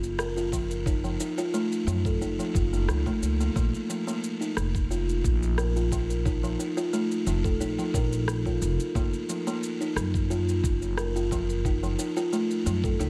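A buzzing, woody kalimba carries this earthy, mystical organic downtempo piece at 89 BPM, its mellow fingertip-plucked arpeggios ringing up front through a delay over chords moving from Gbmaj7 to Bb5 at 3.6 seconds. A dark, gut-strung upright bass plays pizzicato with tube saturation and sidechain pumping, while a gritty, tape-tinged electronic kick enters at 0.5 seconds alongside a layered, overdriven electronic shaker and rim click set in a small room. A studio reverb gives the short section, cut from a longer piece, a mystical space.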